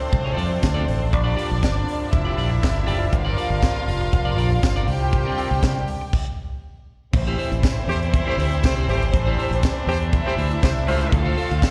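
A tight, up-front funk drum kit with bright cymbals drives this glamorous, sultry disco excerpt alongside a direct fingered electric bass, lush bowed symphonic strings and a twangy, slightly broken-up electric guitar, both with slapback echo, nasal, metallic muted French horns holding sustained chords, a jingly tambourine in the background, and a clear horn section adding tight stabs from 3.1 seconds, with a brief stop at 6.1 seconds, all heard as a live gig through the venue's PA with recital hall reverb.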